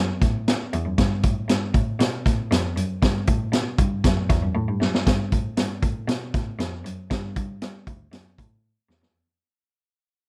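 A straight 4/4 groove at 118 BPM drives this short, danceable slice of uptempo 1960s-style soul, with a vintage acoustic drum kit of hi-hat, punchy kick and high-tuned snare sitting up front with a rolled-off top, and drum fills at 4.6 and 8.6 seconds. A single bowed cello carries the bass line from D2 to G3, its earthy, nasal tone touched with light vibrato and an airy bow. The dark, warm production keeps reverb to a minimum, and the second section fades out from 5.1 seconds to the cut at 9.2.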